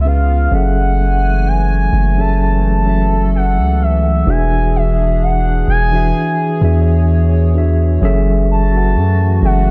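Contemporary R&B in F# minor, this moody, longing fragment of a longer piece moves at a slow 64 BPM in 4/4 with a light 16th-note swing. A deep, up-front 808-style bass anchors the low end with long, sustained notes that strike fast and decay. A mellow tine electric piano, clean and close, carries the accompaniment through C#7, F#m9 and E7 harmonies. Behind them, a hollow, airy pad with a flute-like, ring-modulated edge and a breath of noise sits in the background, its slow-attack chords thickened by chorus. Above, a smooth gliding lead blending sawtooth, sine and triangle tones sings between E5 and A5, its detuned voice shaded by vibrato, chorus and delay. A barely audible electronic downlifter opens the first 0.5 seconds, and the harmony returns to F#m9 at 8.0 seconds under a dark production with light reverb.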